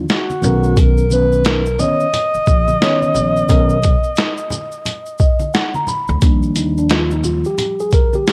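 A cool, relaxed jazz-hop clip cut from a longer piece, heard through light reverb and small room ambience with the grit of a home cassette recording, moving at 88 BPM with a swung 16th-note feel. Up front, a compressed, pitched-down sampler-style boom bap kit with a thumpy kick, medium-tuned snare, hi-hat and shaker carries cassette tape character, while a woody pizzicato upright bass with tube saturation sits under a mellow tine electric piano comping on Bmaj9 and bright, hard-handed maracas and congas sit low in the mix. A smooth, punchy alto saxophone with vibrato leads until 5.5 seconds, the electric piano plays a fill from 4.9 seconds, then takes a solo over Ebmaj9 at 6.2 seconds as the bass drops out at 7.4 seconds.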